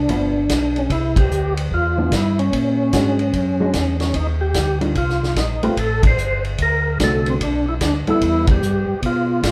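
A wet club reverb sets this swinging, soulful and greasy soul jazz organ trio at a distance, as though heard from further back in the room. A fat, lightly overdriven tonewheel organ with percussive attack, key click, chorus vibrato and a slow rotary speaker carries the melody up front, while a second organ supplies a round, clean bass line and a compressed hollow-body jazz guitar adds fingered accompaniment. A vintage drum kit with dark cymbals and a punchy kick drives the groove on hi-hat, ride and snare as the band hits accents at 1.1, 6.0 and 8.4 seconds.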